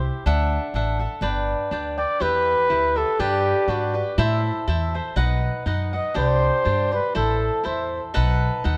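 Proud and festive, this short cut from a longer mariachi-style Mexican folk piece moves at 122 BPM in 2/4 with a lightly swung, rubato feel in E minor, passing through chords like Em, Am and B before closing on B7. A mellow trumpet carries the solo melody up front in a classical style, its smooth top touched with light vibrato, and it drops out at 8.0 seconds. Beneath it, a crisp, picked acoustic cavaquinho and a woody, thumpy pizzicato upright bass with steel strings and a dark tone fill out the accompaniment, all set in light reverb.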